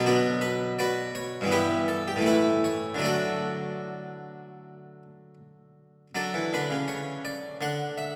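Radiant and flowing, this brief baroque-style suite movement in D major has a solo harpsichord, Flemish in style, brilliant and plucked with octave strings, playing with rubato at 75-84 BPM in 4/4 across a span from G2 to F#5, sitting up front yet heard from further back within a wet church reverb, moving from B minor through E minor and A to D before a new section at 6.2 seconds that settles on Dadd9, the whole cut from a longer piece.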